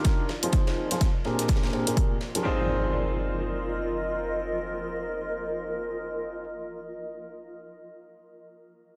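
A swung 4/4 groove of punchy, overdriven electronic kick, layered tape-warm hi-hat and a dark, smooth acoustic kit's ride and snare opens this soulful, bittersweet piano house fragment, while a brilliant, long-sustaining grand piano riff pumps through a low-pass filter and tape echo, a cloudy, mellow granular pad blurs alongside it over Fm7 and Bb13, and an electronic impact arrives at 2.4 seconds just as the hi-hat and kit fall silent.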